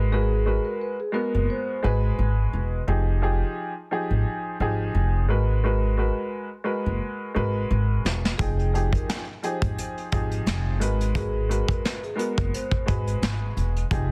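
A dense, heavily limited modern mix with studio ambience frames this tough, dark boom-bap hip-hop excerpt at 87 BPM in 4/4 with a light 16th-note swing, moving between Abm9 and Fm9. A worn, slightly detuned upright piano with a cassette-tape tint sits up front beside a woody, pizzicato upright bass on steel strings, while a mellow, metallic vibraphone played with soft mallets rings in the background through a digital delay, sounding briefly at the start and returning at 8.4 s. A lo-fi, muffled brush drum kit with a punchy kick, medium-tuned snare, hi-hat and rolled-off top enters at 8.1 s and sits close in a small room.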